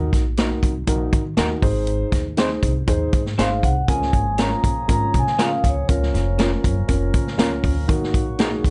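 This short cut from a longer piece has a lightly reverberant studio sound with a rounded, softened top end. It is an uptempo, joyful 1960s-style soul groove with a straight feel, anchored by an up-front big-band drum kit with a boomy kick, a medium-tuned snare and hi-hat, alongside a woody, pizzicato upright bass on steel strings. A dark, boxy upright piano with audible action noise and long sustain plays the accompaniment, while an electric guitar through a small old amp adds picked, slightly broken-up, lo-fi stabs over chords moving from Ebm through Ab and Db6 to Bbm. At 3.4 s a vibraphone played with soft mallets and the motor off takes the melody with a metallic, ringing, mellow tone, carrying it until 6.6 s. From 3.9 s a quieter percussive tonewheel organ holds sustained chords, lightly overdriven and treated with lush chorus, its key click and third-harmonic percussion lending the close a full, warm glow.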